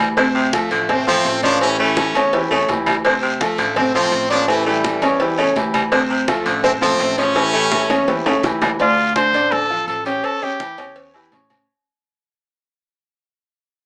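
A straight 4/4 salsa groove at 167 BPM drives this fiery, danceable D minor cut, with thick, low-tuned congas, tight high-tuned cowbell and bongos, ringing agogo bells and timbales in the background, and a very quiet, scratchy guiro, plus drum fills around 2.0 and 7.4 seconds. Over a worn, sparkling grand piano vamping on Dm7 and A7 and a woody, thumpy pizzicato upright bass, a brilliant, loosely played horn section with light vibrato carries the melody up front while a gritty, distant baritone saxophone with scooped notes supplies a second line. At 8.8 seconds a clear, punchy vintage trumpet takes a solo as the music fades out, all heard through a small-speaker sound with moderate studio reverb.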